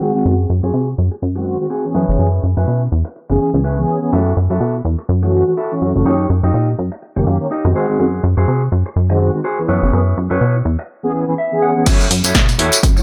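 Over a swung sixteenth-note 4/4 groove, this filtered disco house excerpt feels sensual and nostalgic, as dark, detuned synth brass with chorus and phaser holds the chords beside a clean, fingered electric guitar riff, both muffled by a low-pass filter sweep and pumping with sidechain. A plucky, funky analog bass enters at 0.3 seconds, and a clean electric guitar fill arrives at 11.1 seconds. At 11.9 seconds the drop lands with a tape-warm electronic kick and a punchy analog drum machine playing snare, hi-hat, crash and tambourine, joined by a very quiet, compressed tambourine, all set in light reverb.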